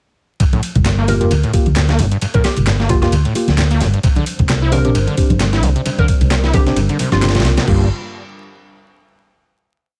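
Opening at 0.4 s with a squelchy, screaming acid line and an up-front, compressed sampled breakbeat with a thumpy kick, backed by a background machine layer of bright hats and claps, this gritty, energetic 132 BPM swung breakbeat track in G minor soon adds very quiet close congas, a round, dark hollow-body electric bass, short phrases from a bouncy square pluck with an old-record colour, mellow electric piano stabs carrying 12-bit sampler grit, and from 4.0 s a deep, moody analog pad pumping in the background, with vinyl crackle throughout before a final Gm7 chord at 7.7 s.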